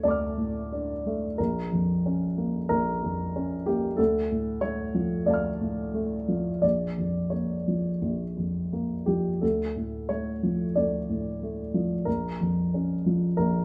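In a free, rubato 4/4, this reflective, intimate neoclassical minimalist piece is carried by a solo upright piano whose dark, woody, mellow tone and short sustain sit up front, reaching from the deep bass into the high treble across the 13.6-second passage. The harmony sways between D minor and B-flat minor throughout. A moderate studio reverb gives the piano a close, live-in-the-room feel, and the passage is cut from a longer piece.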